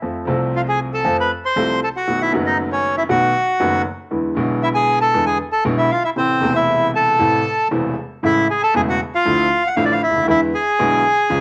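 Rubato 4/4 at 117 BPM, this tense, passionate tango fragment sets a reedy, bright bandoneon melody up front from 0.6 s over a boxy, short-sustained clear baby grand piano accompaniment, shifting from A harmonic minor to A major at 8.2 s, with both parts carrying cassette tape coloring in a home recording bathed in moderate spring reverb and rolled off above 11.0 kHz.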